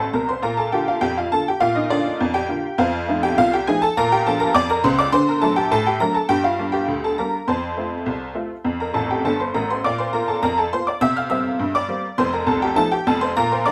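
Ragtime piano in a lively, jaunty 2/4 with a straight feel, played by a single honky-tonk upright piano across the whole 13.7-second excerpt. The detuned, jangly tone has a vintage character, sitting up front with a short sustain and a range that stretches from F1 to F6. A brief fill opens the passage before the main strain begins at 0.4 seconds, and another fill arrives between 8.9 and 9.8 seconds. The harmony moves from Bb through F7, D7, Gm and F, then back to Bb before heading to C7 and closing on F7, suggesting the piece continues beyond this cut. Close, detailed microphones and a light reverb keep the instrument natural and present.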